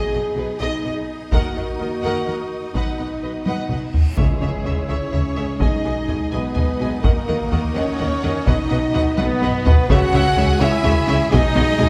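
A dramatic, epic orchestral film cue in 6/8 opens with a smooth, even violin melody over a second, focused violin line, dark violas, lush sustained string chords and punchy, roomy French horns, while expressive cellos and a distant, rich double bass section hold the bass. Close, dry taiko drums played with heavy sticks enter at 1.3 seconds and add drum fills, and at 4.0 seconds a huge reverse cymbal leads into an impact, joined at 4.2 seconds by a brief timpani part as the music moves into its second section. The whole ensemble sits in a wet, church-like hall reverb.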